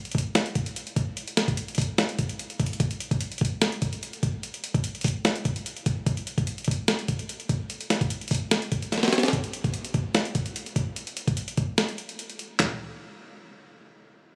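A gritty, compressed drum kit of thumpy kick, medium-tuned snare, hi-hat, handclaps and toms hits hard and up front in a brooding half-time hip hop groove from 0.1 seconds, caught on a phone in a studio room with light reverb, breaking into a fill at 8.9 seconds and dropping the kick from 11.8 to 12.6 seconds before stopping at 12.7 seconds.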